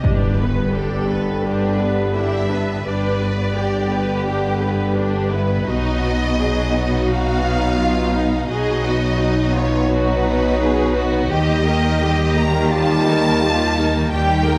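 A lush, spacious orchestral sound opens this excerpt from a longer cinematic film score, its moderate scoring-stage reverb giving the sections a grand, triumphant and adventurous air. Bowed violins carry an expressive melody with soft attacks and a smooth top, while a second violin line sits in the background and distant violas fill in the accompaniment. Rich, even cellos and double basses anchor the bass as the harmony moves from G to B and then to Eb at 11.3 seconds. A very quiet, dark French horn section and a roomy trombone section with soft attacks hold sustained chords behind the strings. At the very start, a huge, dark impact rings in the background until 2.9 seconds, and timpani struck with soft mallets add a round hit on G2.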